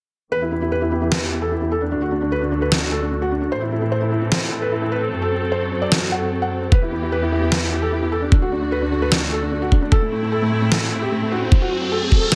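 A felt-muted upright piano carries the melody from the start, its soft, intimate tone with audible action noise trailed by digital delay, over a lush, bowed symphonic string section that holds sustained chords through sidechain pumping and a low-pass filter sweep across the whole cut. This is an aggressive, menacing heavy wobble dubstep passage in half-time, where a deep, layered electronic snare enters at 1.1 seconds and a knocking electronic kick joins up front at 6.7 seconds. An electronic riser arrives at 11.1 seconds in a moderate digital room reverb, all within a dense, heavily limited modern master.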